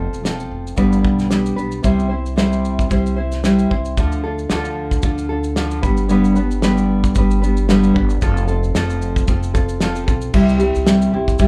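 Acoustic pop with an easy-going, heartfelt mood, cut from a longer piece and moving at a relaxed pace with a gentle sixteenth-note swing. A fingerpicked nylon-string guitar in a classical style sits up front, carrying the accompaniment with a warm tone. Beneath it, a pizzicato upright bass on steel strings gives a woody, dark low end. A cloth-damped drum kit, entering at 0.1 seconds, adds a thuddy feel with a fat snare, tight kick, shaker and dark crash cymbal, its rolled-off top keeping it close and small-room in character. The chords settle onto C at 1.8 seconds, pass through Dm, G and F, and return to C at 10.3 seconds. Light reverb and the sense of a band playing live together in one room give the recording a natural closeness.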